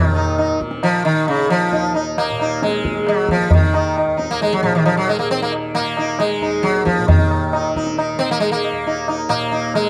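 A dark, lightly reverberant production frames this brief, introspective passage of Hindustani classical music in raga kafi on Eb, cut from a longer piece and moving at 134 BPM in a straight 4/4. Up front, a bright, plectrum-plucked sitar carries the longing melody, its buzzing tone and sympathetic strings set in plate reverb, while a softly plucked tanpura holds a shimmering drone underneath. From 0.2 seconds a low-tuned tabla with a short ring joins, sounding as if in a small room.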